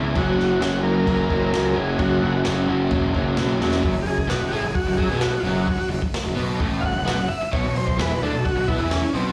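A raw, swaggering garage rock fragment opens on a double-tracked, overdriven guitar riff with slapback echo over a growly fuzz bass, joined almost at once by a gritty breakbeat kit with dark cymbals and a buzzy, heavily vibrato-laden combo organ, and after a drum fill at 3.6 seconds the organ takes a solo from 3.8 seconds onward, the band caught live through a club PA with light reverb.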